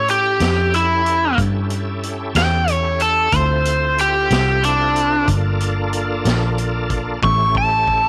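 This excerpt of a soulful, smoky slow blues in 12/8 opens with an overdriven electric guitar carrying the melody up front, its bright, compressed, picked tone set against a full, shouting tonewheel organ that holds sustained chords through a slow rotary speaker and chorus vibrato. Beneath them a vintage fingered electric bass sits dark, round and foam-muted, close and amped in the mix. A vintage drum kit joins at 0.1 s with a punchy kick, high-tuned snare, hi-hat and toms, its sound gritty and saturated with a rolled-off top. The tempo sits at 62 BPM with a straight feel, and the harmony moves from A7 through Dm7 and Gm7 before landing back on A7, where a drum fill closes the passage from 7.2 s. Light studio reverb surrounds the band.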